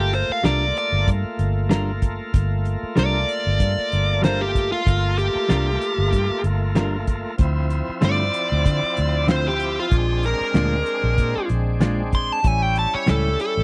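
A straight-eighth groove with a light sixteenth-note swing drives this mournful, brooding soul blues excerpt. Up front, an overdriven, dark lead guitar carries the melody over a shouting tonewheel organ turning through a slow rotary speaker, a round, foam-muted fingered bass, cloth-damped thuddy drums with a fat snare and tight kick, and compressed clean guitar stabs, captured in a dry, close 1970s-style small-room sound as the harmony moves from Gm7 through Dm7 and Bb7 to A7.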